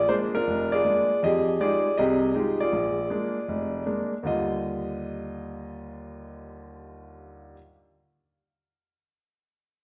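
Swinging eighths at a brisk 159 BPM in 4/4 carry this sophisticated, playful solo jazz fragment, cut from a longer piece, in which a clear, intimate baby grand piano, up front with audible action noise and long sustain, spans F1 to Eb5 through Bb7, Fm9 and Bb7 before settling on Ebmaj9 at 4.2 seconds, all in Eb major tuned to A4 = 437 Hz and bathed in the wet reverb of a large studio.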